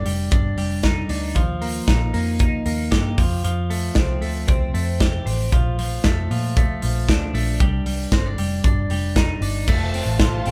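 Jangly indie pop with a bright, breezy mood and a straight, even feel, heard in a brief cut from a longer piece. A clean, twangy twelve-string electric guitar plays compressed, picked arpeggios throughout, its bright ring sitting over a dark, round, foam-muted electric bass that carries the low end. A tight acoustic drum kit, placed up front with a medium-tuned snare, kick, hi-hat and crash cymbal, comes in at 0.1 seconds. The harmony drifts through rich added-ninth and major-seventh colours before settling on F at 9.7 seconds, where a distant, lush string section joins with bowed, expressive sustained chords full of vibrato and portamento. The whole band sounds like it is playing live together in one room, with a light touch of reverb.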